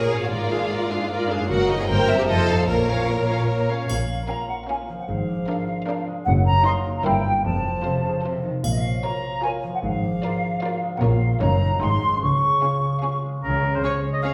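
Rich, vibrato-laden violin and viola sections open this playful, whimsical film cue in 3/4 alongside ringing, fingerpicked harp arpeggios and expressive bowed cello and double bass sections with portamento. A pure-toned flute group joins at 3.9 s with two brief, dark, dry triangle touches, and a soft-attacked, distant oboe takes a second line at 13.4 s as the cut-off passage ends, the ensemble set in a wet recital-hall reverb that lends a magical, mischievous air.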